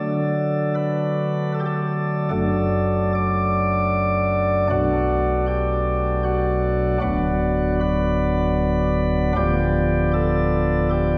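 In a flexible, rubato three-beat lilt, this brief fragment of a majestic yet serene classical chorale features a solo chamber organ whose light, sparkling flute stops speak with a bright chiff up front, spanning D1 to D5 through chords moving from D to Bm7 and on to G7/D, set in a lush scoring-stage reverb that places the listener further back in the room.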